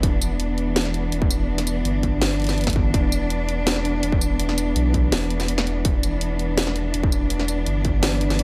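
A smooth, bowed cello section holds sustained chords with vibrato from the first moment, pumping against the beat, while a deep, saturated sub bass and a layered electronic kit of cracking snare, hi-hat and tambourine open this dark, spacious half-time drum and bass excerpt. A distorted electronic kick drives underneath, and a brief break arrives at 5.1 seconds before the groove returns, the kick dropping away at 7.9 seconds. Cello, bass and kit all sit up front in a digital ambience.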